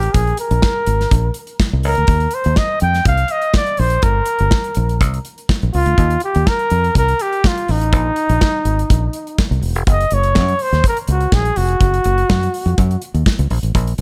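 A dry, close-up sound frames this joyful, danceable disco excerpt at 124 BPM, where a breathy, whispered flugelhorn with vibrato, scooped notes and analog delay carries the melody until 13.0 seconds over a punchy, foam-muted fingered electric bass and an airy, polished studio drum kit with tight kick, hi-hat and snare, moving through chords such as Ebsus2 and Gm before an unaccompanied-by-harmony stretch from 9.9 seconds that lands on Bb5.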